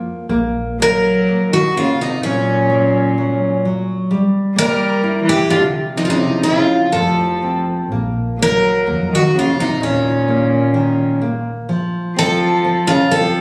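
Passionate and mournful, this fado-style ballad moves in a rubato 2/4, opening with a bright, fingerpicked classical nylon-string guitar, joined at 0.3 seconds by a woody, growly pizzicato upright bass. At 0.8 seconds a shimmering, octave-doubled twelve-string acoustic guitar takes the picked melody up front, while a single bowed cello plays a floating, sul tasto second line beneath it. The sound carries a wet recital-hall reverb and club reverb, with compression and the grain of a phone recording made in the room.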